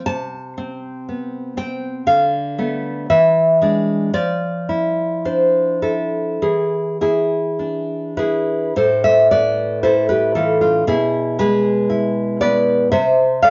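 A fingerpicked nylon-string guitar sits up front from the start, playing a passionate, wistful romantic piece in a free, rubato 2/4 that sounds cut from a longer work, with deep classical body and audible finger squeak. Its range runs from A2 to A5 through chords moving from Am/C through Bm7b5/D and E7 to Dm9/F and E, before a second section at 8.8 s returns to Am, passing through E/B and landing on Am/C. The live studio room adds a wet reverb, and the muted top end gives the sound a soft, dark glow.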